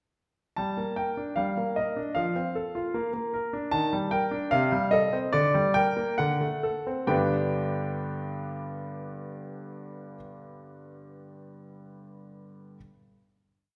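Elegant yet restless, this complete classical-period sonatina is played by a solo concert grand piano, sounding from 0.6 s to 12.8 s in a flexible, rubato 2/4. A single-line melody rides above a broken-chord bass that reaches deep into the low register, with the piano's polished, present tone and long sustain carrying each phrase. The clatter of the action is audible, giving the playing an intimate, up-front quality even as the recital hall's wet reverb places the listener further back in the room. The harmony moves from G minor through F, B-flat and an E-flat major seventh, then a half-diminished chord over C and a D7, and the music slows down from 2.9 s to 7.1 s as it leans toward the close. At 7.1 s the piece settles onto a final G major chord that rings on until about 10.6 s.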